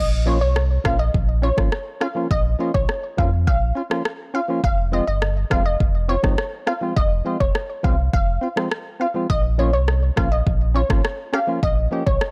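A bouncy, hypnotic dancehall groove at 103 BPM in straight 4/4 rides on an electronic, produced drum kit whose deep kick and rim click sit up front from 0.6 s, over a full sine sub bass with octave that holds sustained, fast-attack notes throughout this cut from a longer piece. A hollow, percussive organ stab with chorus fills in the accompaniment, while a glassy, crystalline wavetable pluck, detuned with a filter sweep, chorus and digital delay, carries a mellow melody high above. The harmony moves from Bbm to Fm at 4.6 s and back to Bbm at 9.3 s in Bb dorian, with a dry sound and little reverb.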